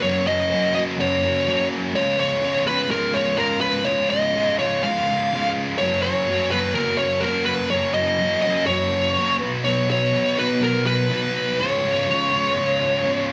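A wet, roomy studio sound frames this swaggering, sunny rock fragment, where a dark, double-tracked sludgy guitar grinds out an overdriven riff up front while a fuzz-drenched lead guitar carries the melody over chords moving from Gb through Db and Cb, both playing live together across the full 13 seconds.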